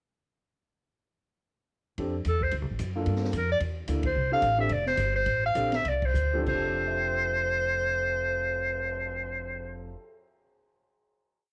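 Small-group swing and bop jazz in F major at 187-222 BPM, sophisticated and playful, with a bright, forceful clarinet out front playing a bebop-style theme with vibrato over woody pizzicato walking upright bass, syncopated rootless piano comping with long sustain, and a drum kit that keeps a ride cymbal pattern with a punchy kick and high-tuned snare. The band hits accents at 4.0 and 6.0 seconds, and the tempo slows down from 4.2 seconds, arriving at a final chord from 6.5 seconds. It has a homely cassette sound, with plate reverb on the piano and a moderate room around the group.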